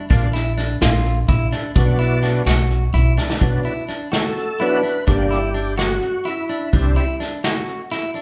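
A roomy, reverberant live-band sound frames this brooding, tense progressive instrumental, cut from a longer piece, moving in 7/8 at 253 BPM in eighths, in B harmonic minor before shifting to B phrygian. A woody, thumpy pizzicato upright bass and a soft brush kit with a tight kick sit up front, while a compressed clean electric guitar plays arpeggios through spring reverb and a grainy egg shaker lingers in the background until 2.9 s. After a drum fill at 3.2 s, the gritty, thick overdriven tonewheel organ, colored by chorus vibrato and a slow rotary speaker, takes a solo from 3.4 s.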